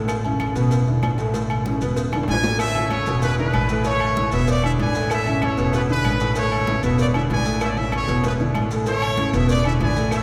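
A straight, danceable salsa groove in four rolls out as festive Latin music, with a thumpy, gut-strung upright bass played pizzicato up front and a clear grand piano comping beside it, while ringing agogo bells and timbales, woody claves, thick-skinned congas, round low-tuned cowbell and bongos, and grainy maracas set the percussion bed, a drum fill at 2.1 s ushers in a bright, tight trumpet section with light vibrato that takes the melody from 2.3 s, and the whole excerpt sits in the lingering wash of a cathedral-like hall.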